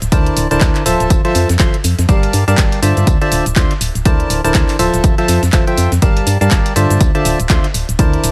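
Piano house with an energetic, bittersweet mood and a swung groove, cut from a longer piece, built on a looping progression of Bbmaj9#11/D, Fmaj7, Gm9 and Dm9. An overdriven, punchy electronic kick sits up front, alongside a layered, tape-warm house kit of handclaps, hi-hat and shaker, and a very quiet, gritty sampler-style soul kit adding hi-hat, snare and tambourine from a large room. A hollow, ring-modulated organ stab carries the riff with chorus, dub echo and sidechain pumping, over a dark, FM organ-like bass that also pumps, all set in a digital ambience.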